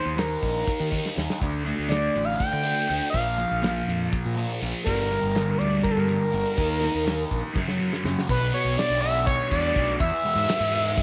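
Psychedelic rock in a driving 7/8 at 244 BPM counted in eighths, dark and hypnotic, this short cut from a longer piece puts a smooth, sawtooth-and-triangle synth lead with ring modulation, vibrato, chorus and slapback echo up front, alongside a double-tracked, picked fuzz guitar riff colored by a phaser. Beneath them, a round, overdriven fingered bass and a dry, damped 70s kit with dark cymbals, a tight kick and a rolled-off top hold the odd-metre groove, with drum fills around 1.0 and 7.6 seconds, all set in a light small-room reverb. The harmony moves from Eb5 through Gm and F#5 before shifting to Bm at 8.3 seconds, where a jingly, band-limited vintage tambourine joins in the background.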